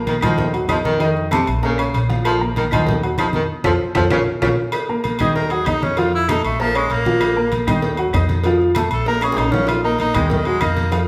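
Fiery and driving, this salsa excerpt races at 194 BPM in Bb harmonic minor: a clear, worn concert grand piano sits up front while a thumpy, gut-strung pizzicato upright bass anchors the cycling Ebm, F7 and Bbm harmony. A breathy baritone saxophone carries a whispered second line until 4.5 s, and after a band accent and drum fill, a soft-attacked tenor saxophone with light vibrato takes an intimate solo up front from 5.2 s. Ringing metal-shell agogo bells and timbales sound close and dry, while damped, low-tuned congas, tight high-tuned cowbell and bongos, and woody claves stay in the background, with the band playing live in one room under a wet large-studio reverb.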